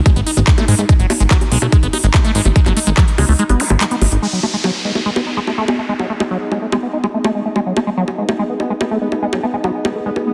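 A bright, pulsing gated texture of sustained chords opens this intense, hypnotic psychedelic trance excerpt at 144 BPM in G# phrygian, soon joined by a squelchy, resonant liquid acid bass riff with phaser and delay, a crisp big-room dance kit of bongos, handclaps and hi-hat, an overdriven, punchy electronic kick that plays until 3.1 seconds, and a funky, ring-modulated plucky analog bass up front through 4.2 seconds, while electronic zap and downlifter effects pass by and an ethereal, airy pad with ensemble chorus enters in the background from 5.1 seconds, all within a dense, heavily limited modern mix.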